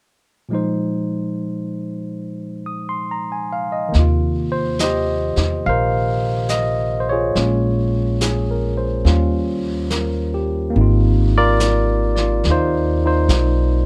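Swung eighth notes in 4/4 set an unhurried, late-night lilt for this intimate jazz ballad fragment, taken from a longer piece. A barky, clean tine electric piano opens alone at 0.5 s, sitting up front and direct as it voices a suspended Bb7sus4 chord before the harmony settles onto Eb69. At 3.9 s the upright bass and a vintage brush kit enter together, the bass plucked, woody and growly with steel-string bite, placed close and forward in the mix. The drums stay further back, with brushes on a medium-tuned snare and hi-hat, their small-room sound mellow and rolled-off at the top. The changes move through Bbm7, Eb9 and Ab69, and the dry, closely miked recording keeps every detail near and personal.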